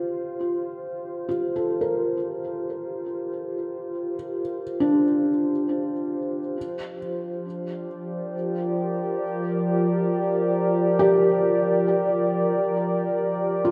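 In free time, this luminous ambient fragment in F major, tuned to A4 = 439 Hz, slowly fades in a warbling, detuned tape-like pad of nostalgic lo-fi sustained chords with chorus beside a soft, felt-muted upright piano whose intimate arpeggios carry audible action noise and delay, both up front in a dark concert hall reverb as the harmony moves from Fsus2 to Gm/F at 6.6 seconds before the sound fades out from 11.3 seconds.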